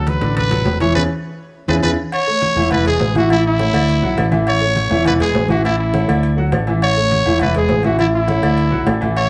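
A growling, raspy trumpet leads this sunny, danceable salsa excerpt at 204 BPM in A major, over a clear grand piano with audible action noise, an up-front fingered electric bass, very quiet congas, ringing timbales and agogo bells in the background, and distant woody claves entering at 0.4 seconds, as a band accent from 1.0 seconds and a drum fill from 1.2 seconds push into an A–E–A–D cycle at 2.1 seconds in a small room with light reverb.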